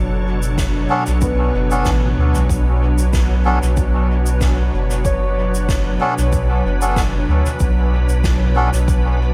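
A round, up-front sub bass anchors this meditative, spacious ambient dub excerpt, beneath a pure, warbling organ-like pad with ensemble chorus holding a single chord, a deep, tape-warm electronic kick, a soft-mallet kit of shaker, fat snare and toms treated with dub echo, reedy, breathy melodica stabs, and a thumb-plucked, ringing harp arpeggiating in the background until about 7.0 seconds.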